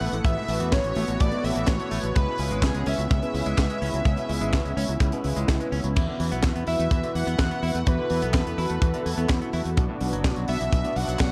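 A bittersweet, melodramatic italo disco excerpt opens with a thick, bold unison lead carrying the melody over a smooth analog pad, twangy clean guitar arpeggios and round, detuned synth brass stabs, each of these four parts steeped in shimmer reverb. Beneath them sit a fingered electric bass, up front and shadowy, and a tight funk drum kit with high-tuned snare, hi-hat, handclaps and crash, while a tight acoustic kick joins at 0.2 seconds. The harmony moves from Asus2 through C#m7 and Esus2 to Bm, all within a dark, warm production.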